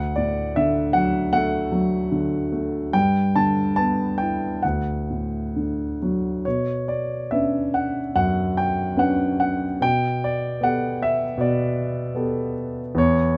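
Classical solo piano in a lyrical, reflective mood, this short excerpt from a longer piece moves with a flexible rubato in 4/4 at roughly 64-79 BPM. A dark, mellow grand piano sits up front and carries everything alone from 0.0 to 13.4 seconds, spanning D2 to A5. The opening section rests in D major, passing from D to G6 and back to D. At 6.5 seconds the harmony turns to B minor with a Bmadd9 chord, later moving to Gadd9/B at 9.8 seconds, while a wistful shade colors the whole passage. A light reverb adds a gentle sense of space around the instrument, and the tuning sits slightly high at A4 = 441 Hz.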